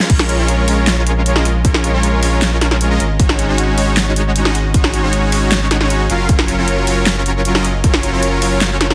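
At 155 BPM in 4/4 with a half-time feel, this emotional, bittersweet future bass drop in Bb minor rides a punchy, layered electronic kick, which drops out at 7.9 s, and a pop drum kit with a fat snare, bright hats and crash cymbal. Up front, a smooth, detuned supersaw riff pumps with the sidechain and trails tape echo, while a deep, thick sub bass, gritty with tube saturation, pumps alongside it. The chords move from Bbm7 to Ab7sus4 to Gbmaj7 under light digital reverb, in a heavily compressed, radio-style mix cut from a longer piece.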